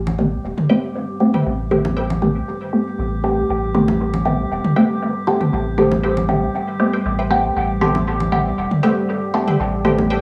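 A muted, dub-echoed chord stab with a phaser sits up front in this hypnotic, meditative dub techno excerpt at 118 BPM in A minor, resting on an Am9 chord over a round sine sub bass, a moody detuned analog pad entering at 0.3 seconds in the background, a glassy drifting harmonics texture, tape-warm electronic congas and toms, and a brighter wave-folded stab riff arriving at 0.7 seconds, all set in a moderate digital room reverb.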